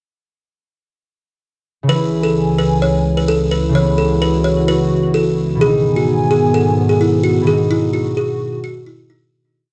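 A buzzing kalimba carries the looping melody up front, its woody, thumbnail-plucked tone filtered and trailed by tape echo, repeating like a sampled phrase between D#4 and C#5. This brooding, menacing trap instrumental sits at 129 BPM in a half-time 4/4 feel in C# minor, tuned slightly flat to A4 = 439 Hz. Alongside it, a concert harp holds open-voiced, thumb-plucked chords that ring through a low-pass filter, also looped like a sample, from 1.8 to 9.7 seconds. A dark analog pad fills the space with deep, detuned, wave-folded sustained chords, shaped by chorus and a slow attack, moving from C#m to G#m at 5.6 seconds. The short piece plays as a breakdown in a dry, gritty hardware recording with a light small-room reverb, fading out from 7.5 seconds.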